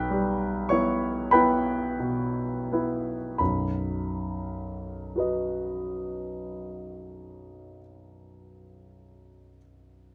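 A clear grand piano plays alone, present and up front, in this brief romantic nocturne cut from a longer piece, running from 0.0 to 10.1 seconds. The mood is tender and nostalgic, set in B major in 12/8 at a very slow 26-35 BPM counted in dotted quarters, with a free, rubato feel. The opening passage slows down through its first 3.4 seconds over an Em/B harmony before settling onto a B major chord at 3.4 seconds, where a second section begins. The piano ranges from B1 in the bass up to C#6, spanning a broad register for a single instrument. Light reverb lends the sound a gentle sense of space while keeping the piano's tone clear and present.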